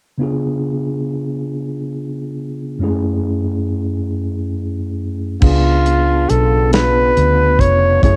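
Sultry and late-night, this slow R&B excerpt in 6/8 at 46 BPM opens with a mellow tine electric piano alone, its clean tone carrying a C#7b9 to F#m9 progression with the warm softness of cassette tape. At 5.4 seconds the rest of the band arrives: a close-miked flugelhorn takes the melody with light vibrato, a round, foam-muted fingered bass and a dry, dark soul drum kit with a tight kick sit up front, and a fat, lightly overdriven tonewheel organ with key click and slow rotary speaker hums in the background. The whole home-recorded piece sits in a studio reverb, and the organ's chords and the flugelhorn line float over the unhurried groove until the cut at 8.2 seconds.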